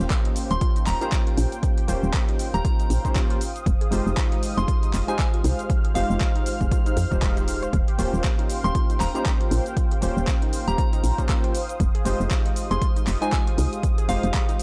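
Smooth and moody, this deep house excerpt moves at 118 BPM in F minor with a 16th-note swing, cycling between Eb13 and Fm7 chords as a punchy, up-front electronic kick and a layered kit of cabasa, handclaps and hi-hat drive it, while a woody, round FM bass sits prominently underneath. A smooth, detuned analog pad holds sustained chords and sawtooth keys with a sub octave and filter sweep play stabs, both with chorus and sidechain pumping. A nasal, lo-fi pluck arpeggiates in the background through analog delay, and a pure, vintage FM bell carries the melody from 0.5 s, all within a dry, gritty hardware sound touched by transformer saturation and vinyl crackle.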